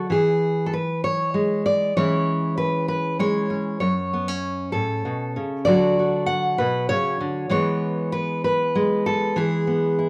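Folk instrumental for solo fingerpicked steel-string acoustic guitar in a straight 6/8, reflective and intimate in mood, a short passage cut from a longer piece and tuned a little below standard pitch. The dreadnought guitar sits up front with a dark, full-bodied tone, spanning F#2 to F#5 as it moves through E, C#m/E, F#m and D before settling back on E at 7.5 seconds. A moderate small-room reverb gives the close, mellow production a touch of air.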